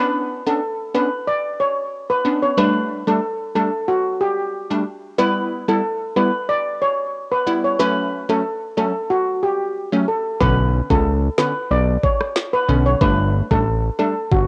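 Dancehall in B minor at 92 BPM, this bouncy, sultry excerpt opens with a shimmering steel pan melody over crisp, phaser-tinted wavetable chord stabs that carry a cassette-tape grain, moving through Bmadd9, Gsus2, Em and F#m. At 10.4 seconds a fat, detuned sawtooth analog bass and an electronic island pop drum kit with a knocking kick, woody snare and rim click join. The whole cut sits up front and dry, with the intimate feel of a home cassette recording.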